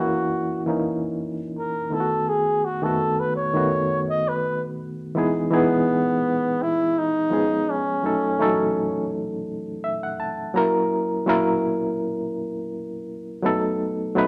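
A breathy, whispered flugelhorn opens this lush, romantic soul excerpt with a soft-attacked solo over a reed electric piano, moving at an unhurried 83 BPM in 4/4 with a gentle sixteenth-note swing in E major. The flugelhorn sits up front with a mellow tone, light vibrato and a smooth top, giving the melody an intimate, pop-style tenderness. Beneath it, the electric piano supplies accompaniment with a barky, reedy bite, lightly overdriven and shimmering with a fast tremolo as if heard through its built-in speakers. Dominant-seventh colours lead into a major-seventh opening of the second section at 5.2 seconds, and the flugelhorn falls away at 9.1 seconds so the piano can take a short fill from 9.5 seconds. The band plays together in one large studio, wrapped in a wet reverb that adds to the plush, romantic atmosphere.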